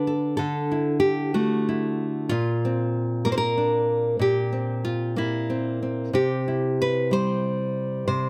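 Pastoral and peaceful, this brief folk excerpt features a solo nylon-string guitar, bright and fresh-stringed, fingerpicked in a classical manner and up front, moving freely in a rubato 6/8 around 62 BPM through Dadd9, Bbadd9 and C, captured with close, detailed microphones and light reverb, tuned to A4 = 439 Hz.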